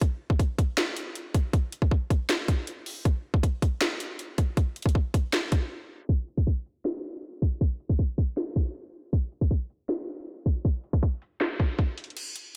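A trap drum kit sits up front in this hip hop excerpt, its electronic, produced sound built from a hard-clipped kick, a sharp snare, metallic hi-hats and a crash cymbal. The tempo is 158 BPM in 4/4, felt at half-time, and the mood is triumphant yet wistful. The whole recording is blown-out and overdriven, dulled by a low-pass filter and set in light reverb. The drums play from the start, and a brief break arrives at 5.7 seconds before the second section begins at 6.1 seconds. A filter sweep runs through that second section, which ends on another short break as the piece is cut off.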